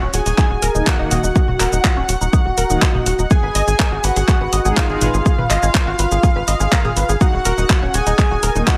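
The overdriven electronic kick drum stands out most, deep and up front from 0.4 seconds in this dark, driving melodic techno excerpt at 123 BPM in Eb minor, moving from Ebm to Abm and back. It sits alongside a tape-warm house kit of handclaps, hi-hat, shaker and toms and a tight, nasal sequencer bass with tube saturation and sidechain pumping. Above them, a smooth, expressive synth lead with vibrato, subtle chorus and dub echo carries the melody, while a soft detuned supersaw with tape echo adds a second line higher up and a lush unison pluck spins phaser-tinted arpeggios. A brassy, bold analog pad adds chorused stabs in the background from 0.7 to 5.1 seconds and briefly again at 8.6 seconds, all set in light reverb.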